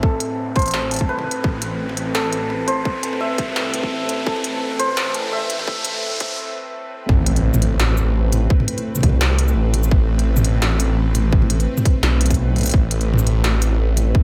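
A hard-clipped, overdriven electronic kick sits up front in this tense, cinematic half-time drum and bass, joined by a swirling, phased detuned saw bass, an industrial kit with a clanging snare, smooth hats, shaker and toms, a nasal, string-like drone holding sustained chords, a shimmering santur whose delayed arpeggios ring until 7.6 s, and a riser that leads to an impact at 7.1 s as the drop arrives.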